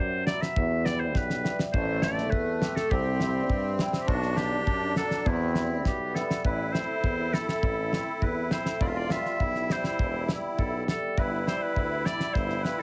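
A straight 2/4 klezmer pulse at 102 BPM drives this festive, bittersweet fragment in E minor, turning to A minor at 6.5 s, with a damped, dry 70s drum kit of tight kick and fat snare coming in at 0.3 s and adding short fills. A bright, vintage clarinet sings the classical-style melody up front over a clear tuba bass with vibrato and the ringing, shimmering hammered dulcimer accompaniment, while a reedy musette accordion joins at 1.7 s with an airy second line. A small room lends moderate reverb, and the mix has a heavily compressed, radio-like sound.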